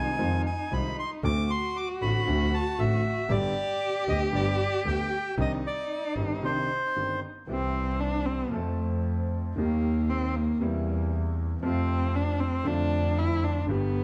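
Over a rubato 4/4 pulse, this melancholic, passionate tango excerpt sets a reedy, bright bandoneon melody above a rich, nasal cello line with portamento, a smooth vintage-toned concert grand piano and a clear, softly bowed sul tasto double bass, all in a dark production with a large studio reverb, until the bandoneon drops out at 7.2 s and the expressive cello takes a solo from 7.5 s as the harmony shifts to major.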